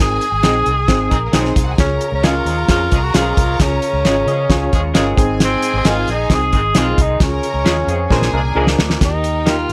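Uptempo 1960s-style soul with a warm, joyful mood, heard as a short cut from a longer piece in a straight four-four groove. A breathy tenor saxophone carries the melody up front, its intimate, whispered subtone coloured by vibrato and scooped notes, while a lush, distant violin section and a clear horn section with octave doubling add second lines behind it. A barky, lightly overdriven reed electric piano with fast tremolo supplies accompaniment, joined by two slightly broken-up, lo-fi guitars through a small old amp, one playing stabs and the other a tremolo riff that drops out at 5.2 seconds and returns at 7.9 seconds. Underneath, a round, punchy, foam-muted fingered bass and a cloth-damped drum kit with a fat snare and tight kick drive the beat, and a very quiet, flute-like tonewheel organ with key click and slow rotary speaker enters at 1.8 seconds with sustained chords. A drum fill at 8.1 seconds leads the passage toward its close inside moderate studio reverb.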